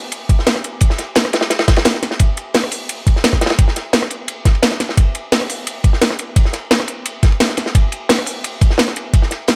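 The sound is close and lightly reverberant, with the drum parts sitting up front in a small-room ambience. This brief excerpt of drum and bass moves at 173 BPM in a straight 4/4, and its mood is melancholic and dreamy, with all of it forming one continuous section. A crunchy breakbeat kit of hi-hat, ride cymbal and snare plays from 0.1 s to 9.6 s; it sounds acoustic, dark and smooth, with shadowy cymbals, a medium-tuned snare and gritty saturation, its top rolled off and its cymbals, hats, snare and room thinned by high-pass filtering. Layered over it from the same moment, a produced electronic kit adds hi-hat, rim click and a cracking snare with metallic hats, carrying a tape-like glow from being re-recorded in a small room. An electronic kick drum enters at 0.3 s and stops at 9.2 s, giving a knocking, layered punch that is the loudest of the parts and shares that same tape-tinged, small-room character.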